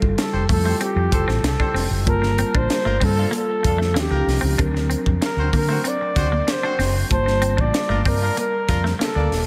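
A straight 4/4 groove from a crisp fusion drum kit drives this polished 1980s jazz-funk pop excerpt, its high-tuned snare, punchy kick and hi-hat sounding gritty and saturated, up front in a pumping small room. Underneath, a dark, round fretless electric bass sits forward in the mix, while a mellow tine electric piano comps through subtle chorus and slapback echo, moving from Fmaj9 through Gm9, Eb9 and D7b13 before returning to Gm9. At 0.2 seconds a breathy flugelhorn takes the melody with a soft attack, light vibrato and a whispered, intimate tone, its line touched by slapback echo. A semi-hollow electric guitar plays a clean, fingered riff in the background, bathed in lush chorus, and a horn section with light vibrato and a smooth top adds a jazz-style second line through digital delay. A lush hall reverb gives the whole piece a big arena sound, framing a mood that feels slick yet bittersweet.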